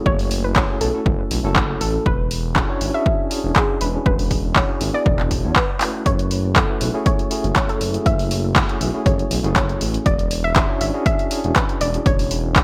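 Light reverb and a bright, 1980s-style digital sheen frame this deep, moody house excerpt in F# minor at 120 BPM, its lightly swung 4/4 groove moving between F#m9 and E13. An up-front, tape-warm electronic kick and a punchy analog drum machine with handclaps and hi-hat drive the track, with a drum fill at 5.8 seconds. Beneath them a smooth, detuned sawtooth-and-square synth bass glides with sidechain pumping, clean tine electric piano stabs sound bright and pump too, and a soft, round pluck melody with chorus and digital delay adds a mellow, ring-modulated tone.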